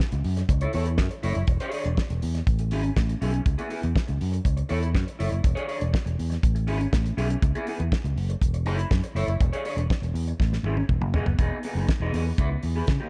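A straight four-four disco groove drives this glamorous fragment of a longer piece, anchored by an up-front damped 70s drum kit with a fat snare, tight kick and rolled-off top, alongside a punchy, amped fingered electric bass. Beneath them, a slightly broken-up electric guitar treated with phaser plays the chords, cycling through F#m7, E6, Amaj7 and C#m7. A drum fill from 10.4 to 11.4 seconds leads into a brief closing section, set in a small room with a dark, warm production.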